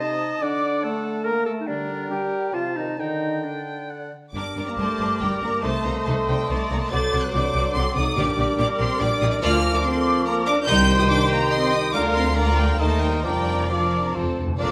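A quick classical-period symphony movement in 3/4, graceful and cheerful, moving at 131-146 BPM with a rubato feel in G minor before brightening to Bb major at 9.4 s. Airy flute, a clear clarinet and a warm cor anglais weave second lines over a mellow, close bassoon and dark, distant French horn chords. At 4.3 s lush violins take the melody as cellos and double basses enter beneath, with the chamber violins joining a moment later and violas at 4.8 s, all filling in with rich, vibrato-laden bowing. Round soft-mallet timpani mark 8.2 s and close on a short fill, all set in a wet stone room.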